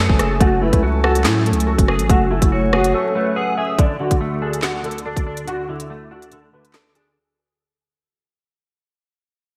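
This half-time drill groove at 142 BPM rides an electronic drum kit set up front, with a hard-clipped kick, woody snare, crisp hats, handclaps and rim clicks, all treated with gated reverb. A deep, sine-toned 808-style bass with a fast attack holds long decaying notes beneath it until 2.9 s, when a break opens before the fade-out that begins at 3.8 s. Over an F#madd9 chord that moves to D, a dark, mellow concert grand piano carries the melody with short sustain, softened by ensemble chorus, a low-pass filter and delay, while a clean, compressed semi-hollow electric guitar supplies fingered accompaniment through its own chorus and filter. A moody analog pad built from detuned square and sawtooth waves with a sub octave and a moving notch swells in slowly and lingers on long sustained chords. A breathy, flute-like synth lead with a warbling vintage vibrato adds a soft second line between 0.6 and 3.8 s, set in chorus and delay. 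The whole ominous, cold excerpt sits in a lush hall reverb with bright 1980s-style digital sheen and a layer of vinyl crackle.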